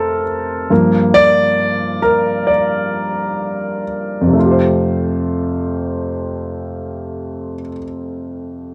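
A clear, intimate grand piano plays alone throughout this heartfelt, emotional pop fragment, cut from a longer piece, its long sustain and audible action noise sitting up front in the mix. The opening passage slows down as it moves from F to Gm7, and a new phrase settles on Fadd9 at 4.4 seconds. A light, small-room reverb frames the piano's polished tone within a dry, close, 1970s-style studio sound.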